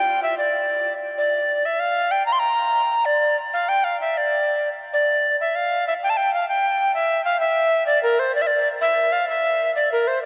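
In a straight 6/8 at 128 dotted-quarter beats per minute, this ancient, mysterious medieval fragment features a lone tenor recorder, up front, its bright, reedy, airy tone and tongued chiff ranging from Bb4 to C6 and moving into a new section at 6.9 seconds, all washed in a long, wet cathedral reverb.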